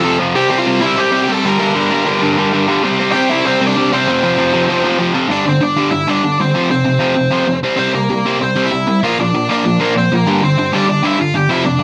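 Punk at 194 BPM in G dorian, urgent and raw, where a biting, double-tracked overdriven guitar picks a low riff up front while a smooth, bright overdriven lead guitar plays the melody above it, both running the full 11.8 seconds under light reverb as the chords move from C and Gm toward a new section at 5.3 seconds that ends on Bb and Gm.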